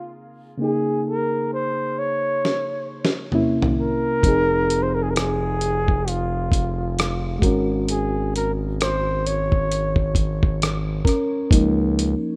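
R&B and neo-soul with a sensual, warm mood and a lazy swung sixteenth-note feel, heard as a short cut from a longer piece. A breathy, whispered flugelhorn carries the melody up front in an intimate, mellow pop style with vibrato and a soft attack, its line trailed by tape echo until it drops out at 10.2 seconds. Underneath, a reedy electric piano plays clean chords through its built-in speakers, moving from Db69 through C7b9, Fm7 and Ab9sus4 before returning to Db69. A dusty, sampler-style drum kit arrives with a fill at 2.5 seconds, gritty and compressed with a thumpy kick, medium-tuned snare, rim clicks, hi-hat and toms, re-recorded in a small room and sitting up front. At 4.2 seconds a smooth, saturated synth bass joins, blending sawtooth and triangle tones with wave-folding, sustained notes, vibrato and gliding portamento. The rough home-demo mix is dry and close, giving the whole passage a loose, after-hours intimacy.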